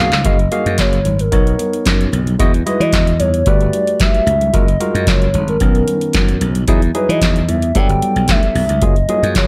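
Opening on a fill from a booming analog drum machine with deep kick, tonal snare, metallic hats and handclaps bathed in gated reverb, this danceable, feel-good early-eighties boogie funk excerpt at 112 BPM in F# major sets a bright, growly, punchy slap bass up front beside a barky, lightly overdriven tine electric piano and a hollow, woody clarinet-like synth lead carrying the melody with chorus, vibrato and slapback echo, while very quiet, distant congas ring in a large room over a repeating cycle of lush major-ninth chords from F#maj9 through Bmaj9 and Emaj9 to Gmaj9.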